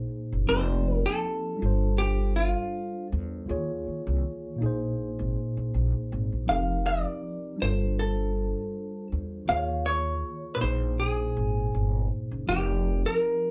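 Sensual and warm, this neo-soul R&B excerpt at 80 BPM in 4/4 with a light 16th-note swing pairs a mellow, clean tine electric piano and a woody, pizzicato upright bass with a dark, compressed hollow-body jazz guitar that carries the picked melody from 0.5 seconds, all three up front in a moderate small room as the band plays live over a repeating cycle of suspended ninth chords beginning on F9sus4.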